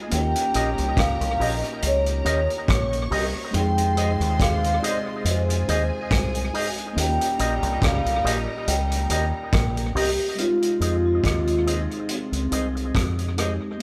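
A live band in a moderate stone room carries this bittersweet, longing lovers rock reggae cut from a longer piece, moving at a slow 70 BPM in F minor with a gently swung sixteenth-note feel over Eb7 and Fm7 chords. An airy, ringing vibraphone played with soft mallets and a slow motor vibrato sings the melody over a round, dark dub bass and a punchy, up-front vintage drum kit of kick, hi-hat and rim click touched with tape echo. A bright, scooped guitar through an envelope filter adds echoing stabs, while a mellow tine electric piano, a smooth horn section and a lush bowed string section sit in the background, the strings falling away at 10.3 seconds.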